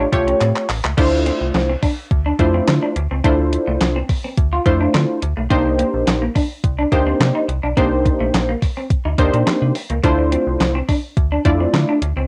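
This danceable, funky boogie-funk excerpt in D minor opens on an altered A7 chord, with a punchy polysynth comp, a semi-hollow electric guitar and a metallic FM bass sounding together from the very start. A clean 12-bit drum machine joins at 0.1 seconds and plays a fill from 0.4 to 1.0 seconds before the main groove settles in at 106 BPM in a straight 4/4. Up front in the mix, the detuned sawtooth-and-square polysynth carries sustained, chorused chords with a fast attack and a filter sweep, moving from Dm9 to Cm9 at 5.5 seconds and back to Dm9 at 10.0 seconds. Beneath it, the FM bass has a digital, fast-attack, decaying tone thickened by tube saturation. The sampler-style drums bring a thumpy kick, fat snare, handclaps, hi-hat and crash, all with a cassette-tape coloring. Sitting lower in the balance, the guitar plays a clean, picked riff with a hollow-body, warm tone bathed in lush chorus, and the whole cut has the light reverb and homespun character of a cassette home recording.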